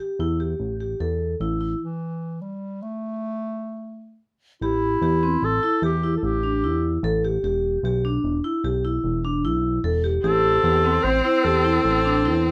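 Contemporary chamber music in a pensive, hypnotic 7/4 at 149 BPM in A minor, where metallic vibraphone arpeggios open the excerpt over a fat, saturated analog bass, a mellow classical-style clarinet carries the melody from 1.8 s through a stop, and a rich, bowed cello with vibrato adds a second line at 10.2 s, all in light reverb.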